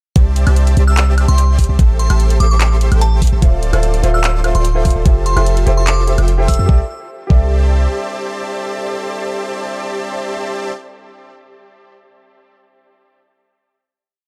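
This future bass piece opens straight into a euphoric, playful drop at 0.2 s. A huge, detuned supersaw riff throbs in tempo with sidechain pumping and tape echo over a deep, boomy 808-style bass locked to the chord rhythm, while a knocking electronic kick sits up front in a half-time feel at 147 BPM. A trap kit adds bright hats with rolls, handclaps and a high woodblock, and a glassy, crystalline FM bell soon enters with short phrases colored by chorus, phaser and digital delay. At 3.4 s a worn baby grand piano joins with dotted-rhythm rootless chords as the harmony moves through C69, Am7, Dm7 and Fmaj7 in C major. The trap kit falls away just as the music resolves on C69 at 6.7 s, the kick and bass soon follow, and the piano and supersaw ring out as a final chord. The production is dark and warm, set in a digital ambience.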